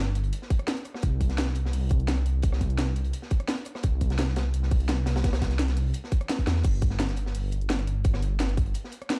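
A dark, detuned saw bass opens this dreamy, uplifting liquid drum and bass excerpt, its deep, rumbling, beating tone sitting up front through a small room ambience. Two drum kits join at 0.2 seconds: a crunchy, saturated breakbeat kit with a gritty, rolled-off top and a medium-tuned snare, layered with an electronic kit bringing a cracking snare, rim clicks and crash cymbals. A tight electronic kick enters at 0.5 seconds, and a drum fill at 6.5 seconds launches the drop into its second pass.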